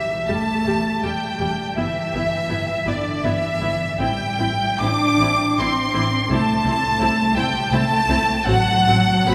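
Bathed in a cavernous cathedral reverb, this brief cut from a longer classical piece for string orchestra unfolds as a slow, melancholic and solemn romantic movement in three, pulled freely with rubato. A clear, focused violin section carries the melody with vibrato while a smooth second violin section sings its own line, above a cello section whose soft attacks and expressive portamento anchor the bass. At 0.3 s a rich viola section fills in the accompaniment and a bowed double bass section deepens the low end, with the harmony settling on a diminished chord at 8.5 s.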